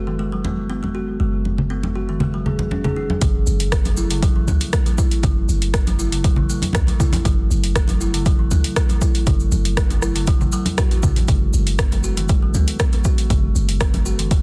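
Afro house at 119 BPM in a straight 4/4, this hypnotic, spiritual excerpt from a longer piece sits in F# dorian with tuning set slightly sharp at A4 = 445 Hz. It opens with a woody, ringing kalimba playing arpeggios through dub echo and sidechain pumping, over a deep, boomy 808-style bass with a sine tone, a noise layer and a fast, decaying attack that pumps along with it, while close, dry congas struck with hard hands join almost at once. The drop arrives at 3.2 seconds as the harmony moves to F#m7, bringing in a punchy, overdriven electronic kick placed up front with studio reverb, an afro-pop kit of metallic hi-hats and rim clicks with a tape-like warmth and soft clipping on the snare, and a grainy, bright cabasa set low in a live room. At 11.3 seconds the chord shifts to G#m7 over an F# bass, and the congas fall away just before the close while every other part carries on to the end. 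The mix is a dense, heavily limited modern master in which the kick and bass dominate.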